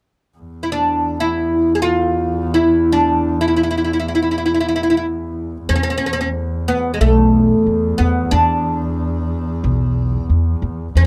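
A dry, close 1970s-style studio sound frames this passionate, festive Turkish excerpt in E makam hicaz, moving at 91 BPM in a straight 4/4. A rich, bowed double bass holds an expressive E drone with vibrato and portamento from 0.4 seconds, while a bright, woody fretless oud, plectrum-plucked on double strings, sits up front carrying the melody. At 5.7 seconds a thumpy pizzicato upright bass with steel strings joins on the bass line, adding warm support underneath.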